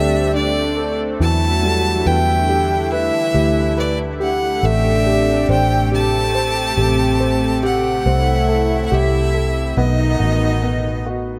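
Pop ballad in E minor at a slow 70 BPM, heartbroken and emotional, where a clear, close bowed violin with vibrato carries the melody up front over a dark, distant French horn section playing a second line in the background, a warm grand piano with long sustain, a lush detuned sawtooth pad holding chorused chords, and a round, foam-muted vintage electric bass, all set in an echo-heavy small-room mix with tape echo on the violin, horns and piano as the chords move from D7sus4 through Em7, Am7 and C6 to B7 in this section cut from a longer piece.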